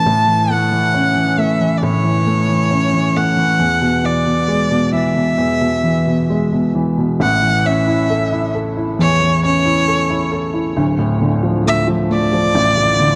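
An upright piano and a bowed erhu begin together in this hopeful, emotional pop piece, cut from a longer work and moving at a slow 68 BPM in straight 4/4 in A major. The erhu carries the melody between C#5 and A5, its clear, smooth and even tone shaped by light vibrato and portamento, with a touch of delay trailing behind it. Beneath it, the woody upright piano supplies the accompaniment across a deep span of the keyboard, sitting up front just like the solo line. The harmony moves from A to E, returns to A at 7.2 seconds as a new section begins, and then darkens to D minor. A moderate scoring-stage reverb and a dark, warm production give the whole 13.2 seconds a rich, intimate glow.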